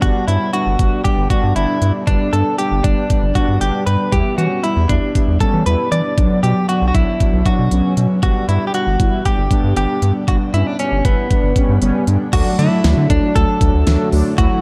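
Synth-pop at 117 BPM in a straight 4/4, driving and cool, this excerpt puts a clean, picked electric guitar melody up front over mellow, brassy synth brass with chorus, tremolo and shimmer reverb, a deep, round analog bass, and a knocking, fat-snared pop kit with crisp hats. The chords move from G through Em and Bmadd9 back to G, and at 12.3 s the harmony shifts to D as a very quiet, lush string machine enters with slow-attack sustained chords. The dark production sits in a moderate recital-hall ambience, with the drums and guitar pushed forward.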